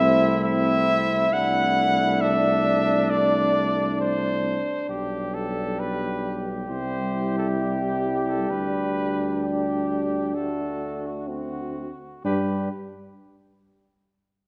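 A mellow cornet carries the melody up front in this excerpt from a brass quintet, singing with light vibrato and a smooth top in a noble, unhurried classical style. The piece moves at 66 BPM in 4/4 with a rubato feel, in G major, and the progression passes from Am/C through G/B, C, G/D and D7 before landing on G5 at 12.2 seconds. Beneath the cornet, a flugelhorn sounds a distant, roomy second line, while a clear French horn with a vintage character and a background trombone supply the accompaniment. A punchy tuba with vibrato anchors the bass up front. All five parts play together from the start until 12.7 seconds, and the recital hall reverb gives the ensemble a wet, spacious glow.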